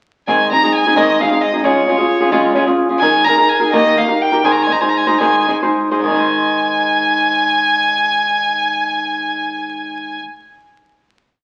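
At 0.3 s a smooth, vibrato-rich bowed violin and a boxy, fingerpicked flamenco guitar begin together in this proud and romantic mariachi piece in 6/8 and Ab major, moving at 69-88 BPM. The single violinist sings hook-like motif phrases from a distance yet sits up front, while the acoustic guitar strums sixteenths in open chord shapes with audible finger squeak. The pace slows from 3.0 to 6.0 s before a held final chord, all heard through a large, wet studio reverb and the crackle of a very old 78 rpm record.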